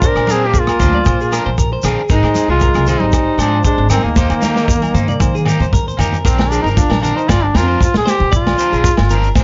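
A dry, dark-topped mix opens this sunny, carefree excerpt of highlife guitar band music at 116 BPM in Bb mixolydian, where an up-front duduk sings a clear, vibrato-laden folk melody over a soft-edged alto saxophone second line with slapback echo that drops out at 5.7 s, a twangy clean electric guitar picking compressed arpeggios through tremolo and slapback, a slightly broken-up rhythm guitar, a woody pizzicato upright bass, a gritty, saturated breakbeat kit with a punchy kick and a drum fill from 4.2 s, grainy shekere, ringing agogo bells in the background and very quiet hard-hand congas, all moving through Bbadd9, Ab and Eb before returning to Bbadd9 at 6.3 s.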